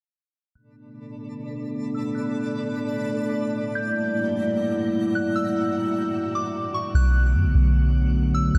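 A dark, lightly reverberant production frames this spacious, melancholic half-time hip hop excerpt, cut from a longer piece. A moody, detuned analog pad with lush chorus holds sustained Bm7 and F#7b9b13 chords up front, while a gentle FM synth bell sings a pure, mellow melody high above and a twinkling granular layer adds sparkling shimmer from 1.0 seconds, all beneath a filter sweep. At 6.9 seconds the granular layer drops out, the harmony returns to Bm7, and a round, sine-based 808-style bass enters with deep, decaying notes.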